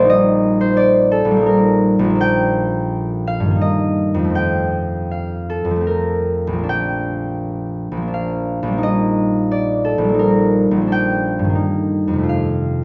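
Moving in a flowing 3/4 with a rubato feel, the pulse breathes between 68 and 90 BPM, giving this classical solo harp excerpt a graceful, unhurried sway. The concert harp carries the whole piece alone, its fingerpicked strings ringing out in Bb major across a range from Bb1 up to G5, with a tuning of A4 = 438 Hz. Its tone is acoustic and warm, placed up front by close, detailed microphones that catch every string's bloom. The harmony circles gently through Eb over Bb, Bb, Eb over G and F, returning to Bb at 6.7 seconds before the same pattern comes round again. A moderate recital hall reverb with a 1.5-second decay surrounds the instrument and lends the serene mood a soft halo of space. The passage is cut from a longer piece, ending on the F chord at 12.3 seconds.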